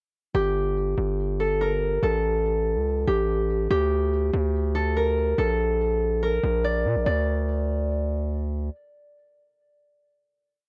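A fingerpicked concert harp loop, ringing and up front, opens this eerie, dark half-time trap piece together with a heavy, saturated 808-style bass whose long sub-bass notes slide in pitch, carrying a gritty noise layer. The harp's looping melody is repeated like a sample over a brooding minor progression until the hook gives way to a final chord at 7.1 seconds. Light reverb and small-room ambience sit around the parts, and the whole recording has the worn, warbling pitch drift of old cassette tape.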